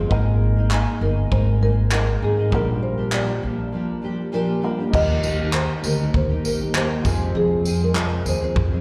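Heard as a live gig through the venue's PA, this short acoustic pop cut sits in a moderate club reverb with the tail of a recital hall. The mood is carefree and sunny, carried by a lightly swung 4/4 feel. A soft-mallet marimba sings the melody with a mellow, round rosewood tone, while a double-tracked nylon-string guitar, fingerpicked on fresh strings, fills out the harmony in a full-bodied classical voice. In the background, an upright piano with long sustain adds a natural glow through plate reverb and slapback echo. Up front, a pizzicato upright bass sounds bright and woody on steel strings, and a loose indie drum kit, entering at 0.1 s, brings a punchy kick, dark cymbals, handclaps, tambourine and crash in a pumping studio room.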